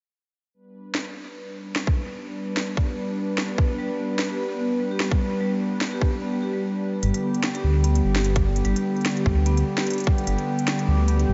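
IDM at 148 BPM in 4/4 with a 16th-note swing, this excerpt carries an intricate, eerie mood and sits a touch below standard pitch, with the harmony resting on G. A smooth, chorused analog pad of detuned sawtooth tones opens at 0.5 seconds, holding sustained chords with a slow attack while a filter sweep moves across it through the first section. The drums follow: an organic electronic kit with a woody snare and crisp hats, overdriven, filtered and touched with tape echo, and a tight, overdriven electronic kick placed up front, both re-recorded in a large room. A mellow vibraphone played with soft mallets and the motor off enters at 3.8 seconds, its metallic, ringing arpeggios trailed by tape echo. At 7.0 seconds the second section brings in a deep, rumbling detuned saw bass, dark and beating with a fast attack and sustained notes. The whole mix is dreamy and soaked in a huge ambient reverb, its top end rolled off above 7.6 kHz.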